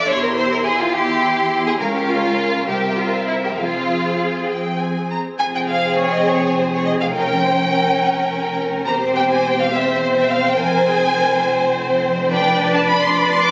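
Violins, violas and cellos open together in a lively, cheerful classical-period movement for string orchestra in F minor, with the double basses joining at 0.1 s, moving at 69 BPM in a rubato 6/8. Up front, the first violins carry a warm, expressive melody with a smooth top and soft attack, while the seconds add a focused, rich line beneath; the violas sit distant and even, the cellos play an intense, clear bass with light vibrato, and the lush double basses stay in the background. This excerpt, cut from a longer piece, sounds phone-recorded in the room, bathed in a wet scoring-stage reverb with a club-like ambience.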